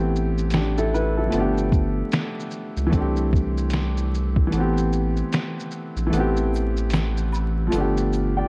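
Dark, warm production with vinyl crackle, light reverb and digital ambience gives this short cut from a longer lo-fi hip hop piece a nostalgic, reflective air. It moves at 75 BPM in 4/4 with a swung sixteenth feel, in A minor and tuned slightly below standard pitch. A clear, woody upright piano carries the accompaniment up front, its intimate tone softened by cassette tape and a low-pass filter, with the action noise of the instrument audible as it moves through Am7, G7, C6 and Am9. Beneath it, a deep, saturated sub bass with a sine-like body and fast attack holds sustained notes, while a compressed, pitched-down sampler-style drum kit adds a thumpy kick, fat snare, hi-hat, shaker and finger snaps with a muffled character. At 6.1 seconds the kick drops out as a tube shaker and woodblock enter quietly in the background, their acoustic small-room sound adding texture as the chords return to Am7 and G7.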